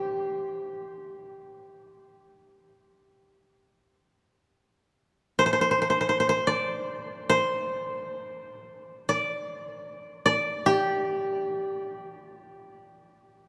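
Bathed in the long, cavernous reverb of a cathedral-like space, this calm, austere fragment of traditional Japanese chamber music, cut from a longer piece, features a solo koto plucked with fingerpicks, its woody, dry tone sitting up front as it moves in free time between G4 and D5 from 0.0 to 13.3 seconds.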